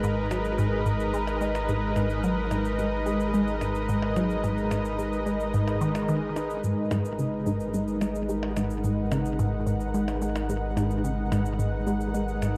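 A straight 4/4 pulse from quiet electronic shaker and percussion blips, carrying tape echo and re-recorded in a large room, drives this hypnotic, expansive stretch of sequencer-driven ambient space music, cut from a longer piece. A juicy, squelchy pluck riff of detuned sawtooth with a moving notch, dressed in chorus, phaser and tape echo, cycles over a round sine sub bass holding its low note, while an up-front, thick unison pad of slow-attack chords spreads out through chorus and shimmer reverb. The whole passage rests on a single minor-seventh chord, set in a dark, warm production inside a long, lush hall reverb.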